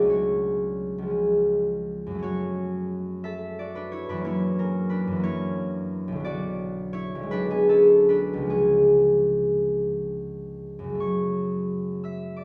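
Moving in a rubato 6/8 that drifts between 42 and 62 BPM in dotted quarters, this classical solo for concert harp has a mysterious, gentle mood in F# minor, tuned to A4 = 438 Hz. The fingerpicked harp sounds bright and ringing, reaching from B1 up to E6, and sits up front even as the moderate scoring stage reverb places the listener further back in the room. The harmony opens on F# minor over C#, moves through F#7 into B minor and a G# diminished chord over B, then rests on C# before settling back on F# minor. A brief new section begins at 11.0 s on that return to the home chord. This short passage is cut from a longer piece and runs for 12.4 s.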